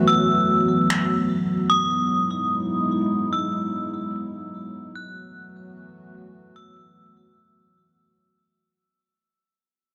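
Floating and dreamy, this atmospheric cloud-rap fragment drifts in free time, cut from a longer piece and fading out across its full 8.2 seconds. A dark analog pad holds sustained chords from the start, its detuned, wave-folded tone deep and moody with a sub octave, a slow attack and chorus, sitting up front in the mix. Above it, a metallic FM bell carries a high melody, ringing and inharmonic with a fast attack and decay, shaped by chorus, a low-pass filter and tape echo until it stops at 7.7 seconds. Electronic finger snaps, overdriven and re-recorded in a small room, appear only briefly at 0.9 seconds, within an opening break that lasts until 1.7 seconds. The harmony moves from B7sus4 to Emaj9 at 1.7 seconds and back to B7sus4 at 4.9 seconds, all wrapped in light reverb and a digital ambience.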